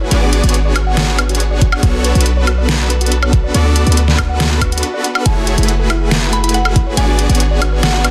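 Emotional, bittersweet future bass in a half-time feel, this excerpt layers huge, detuned supersaw chords and a round, tine-like thumb-piano-style pluck arpeggio, both pumping with sidechain and echoing through digital delay, over a deep, boomy 808-style bass and an overdriven pop kit of hi-hat, deep snare and woodblock, while a knocking electronic kick drives the middle from 1.6 to 6.8 seconds, a background swell sounds at 4.7 seconds, and a woody, mellow mallet-like pluck carries the melody from 5.3 seconds through a chord progression moving from G#m7b5 to Bm9, D6 and F#m9, all set in light digital ambience with a dense, heavily limited modern master.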